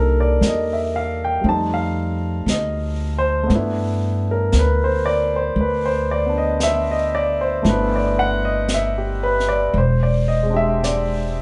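An intimate concert grand piano with audible action noise, long sustain and deep bass provides the accompaniment in this romantic, late-night jazz ballad in G major at 58 BPM with a gentle swing, moving from Cm7 through F9 to G6 before an E7alt at 9.8 s, while a woody, thumpy pizzicato upright bass on gut strings sits up front beside it and a natural-sounding brush kit with a high-tuned snare and hi-hat enters softly at 0.4 s, all captured as a band playing live in one room with a wet, dark studio ambience in this short fragment of a longer piece.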